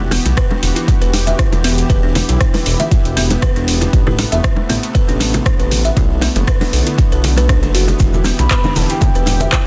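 This afro house excerpt opens with a detuned sawtooth pad holding sustained chords under chorus and tremolo, while a smooth, saturated synth bass pumps up front and low-tuned bongos sit close and dry in the background. Within the first second a buzzing, woody kalimba plays bright arpeggios through digital delay, an afro-pop kit adds handclaps, metallic hats and a rim click, and a deep electronic kick drives the groove at 118 BPM in 4/4 with a light swing on the sixteenths. The harmony moves from E minor through Amadd9 and Bm7 before returning to E minor at 8.0 seconds, keeping the mood earthy and hypnotic. At that point a grainy egg shaker joins, ringing congas follow at 8.1 seconds, and at 8.4 seconds a reedy, airy bansuri enters with vibrato, sounding distant through its own delay. The small-room mix is dense and heavily limited, with the kick and bass pressed forward.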